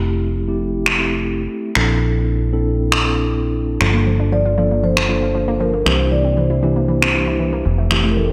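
Nu-disco at 117 BPM, this groovy, cosmic fragment from a longer piece opens on a mellow tine electric piano with delay and a fat, detuned sawtooth bass up front, joined at 0.9 seconds by dry, dark finger snaps, over chords moving from Fmaj7 through Bbmaj9#11, Gm7 and C7. A lush, warbling unison pluck with a filter sweep and digital delay adds arpeggios from 3.8 seconds, and a soft-mallet vibraphone with a ringing, metallic tone carries the melody from 4.3 seconds, before a very quiet riser appears at the close. The bright 1980s-style digital production sits in a moderate hall reverb.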